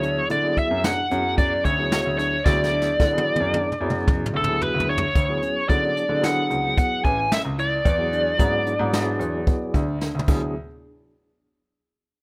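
Set in a straight 5/4 at 111 BPM, this progressive instrumental band piece drives forward in D lydian with a bright, driving energy, cut from a longer work. A jazz brush drum kit sits up front with an airy, polished sound, dark cymbals, a medium-tuned snare and a boomy kick, and it plays fills from 2.5 to 5.2 seconds and again just before the chords drop out at 10.6 seconds. A clear grand piano with short sustain carries the bass line in its low register, while a biting, overdriven lead guitar, picked and placed up front, states the melody until 10.0 seconds. Beneath it, an overdriven tine electric piano adds barky, gritty chords through a combo amp with fast tremolo, and a clean tine electric piano ripples arpeggios in the background. The harmony rests on Dmaj7 before moving to E7 and settling on D, all heard in light reverb and small room ambience with the rough feel of a home demo mix.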